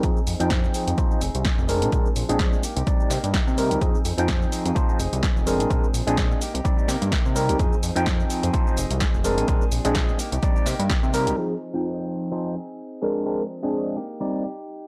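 A barky, overdriven tine electric piano sits up front through a combo amp, cycling Fm7, Bb9 and Cm7 with phaser and sidechain pumping in this groovy, funky filtered disco house cut at 127 BPM in F dorian, swung on the 16ths. Behind it, a bright, clean, direct-recorded electric guitar picks a compressed riff with subtle chorus, while a fat, nasal analog bass pumps beneath a punchy, up-front kick and a tape-toned drum machine of hi-hat, shaker and snare, with a barely audible egg shaker adding vintage acoustic texture. Filter sweeps move through the dry, gritty hardware sound; the drums and bass drop out near 11.4 seconds, leaving the piano until 14.4 seconds and the guitar until 14.9 seconds.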